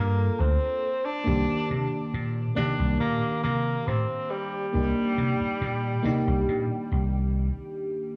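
Vaporwave with a melancholic, nostalgic mood, this short excerpt cut from a longer piece moves at an unhurried pace in a straight four-beat feel. A tenor saxophone carries the melody in a low register, its tone vintage and jazz-inflected with vibrato, sitting up front and trailed by tape echo. Beneath it, a mellow FM electric piano supplies the accompaniment with soft, rounded, decaying notes and a dark edge, thickened by lush chorus and analog delay, with a noise layer underneath. A vintage slap bass anchors the low end, amped, round and punchy, and placed prominently in the mix. The harmony settles on Gm9 before moving to Cm7 at 0.8 seconds, and the piano lingers alone after the bass and saxophone stop, ringing out until 8.2 seconds. A moderate plate reverb and a cassette-tape character give the whole a hazy, worn sheen.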